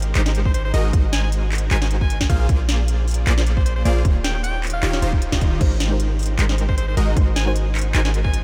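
Over a swung, half-time groove of hard-clipped electronic kick, sharp snare, crisp hats, handclaps and crash, this euphoric, playful future bass piece pumps a deep, boomy 808-style bass and a punchy, detuned supersaw stab riff with delay beneath an edgy, forceful alto saxophone lead with vibrato entering at 0.5 seconds, while a soft, round, dark pluck with chorus sits in the background from 5.6 to 7.5 seconds, in a light reverb.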